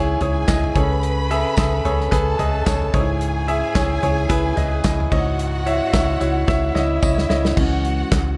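Driving and bittersweet, this short piano-driven pop passage is cut from a longer piece and moves in 4/4 with a light swing on the sixteenths, circling C-sharp minor harmonies that shift to a major-seventh colour over the same bass note and later to an added-ninth shading. A clear, up-front baby grand carries the accompaniment across the whole passage, while a lush, bowed violin section with expressive vibrato sits further back as a second line in the upper register. Underneath, a round, amped hollow-body short-scale electric bass holds a low C-sharp, and an acoustic country drum kit with a punchy kick, medium-tuned snare, dark cymbals, hi-hat, toms, handclaps and crash comes in at 0.2 seconds, sounding as if captured in a small room. A jingly, band-limited vintage tambourine adds a very quiet shimmer from 0.5 seconds to 7.2 seconds. A drum fill arrives at 6.5 seconds, leading back to the home chord, all framed by light reverb in a dark, warm production.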